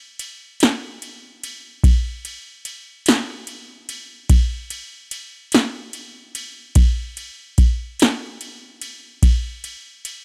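An analog drum machine carries this brooding, soulful blues excerpt alone, its deep kick and punchy snare sitting up front alongside a ride cymbal in a slow 12/8 with a straight feel. The electronic kit has a tape-warm character, captured dry and close in a 1970s-style studio sound with little reverb, and it plays from 0.2 seconds to the cut at 10.2 seconds.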